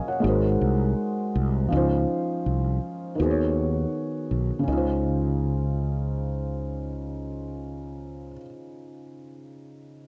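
A felt-muted upright piano opens this dreamy, nostalgic lo-fi hip hop excerpt, its soft, intimate tone thickened by heavy felt, with audible action noise and a plate reverb glow as it plays accompaniment from Db3 to Ab5 across the full 10.1 seconds. A mellow fretless electric bass joins at 0.2 seconds, round and direct, sitting up front in the low register before stopping at 8.4 seconds. The groove moves at 81 BPM in 4/4 with a lazy 60% swing on the sixteenths, rooted in Db major. The harmony drifts from Ab7 through Dbmaj7 and Cb6/Eb before returning to Dbmaj7 as a second section begins at 4.7 seconds. A small room adds a modest ambience, and the worn, warbling cassette tape lends a gentle pitch drift that deepens the faded, memory-like feel of this fragment cut from a longer piece.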